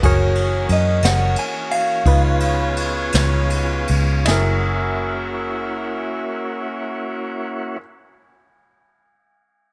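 A dark, slightly broken-up electric guitar through a small old amp leads this laid-back, swaggering slow blues in 12/8 at 51-62 BPM, soloing over F#7 and C#7 as the tempo slows until it stops at 3.1 seconds, backed by a round, foam-muted vintage bass up front, a woody, slightly detuned upright piano, a tonewheel organ with key click and slow rotary speaker, a mellow horn section with light vibrato, and brushed jazz drums with a boomy kick and high-tuned snare that drop out at 4.5 seconds, set in light reverb.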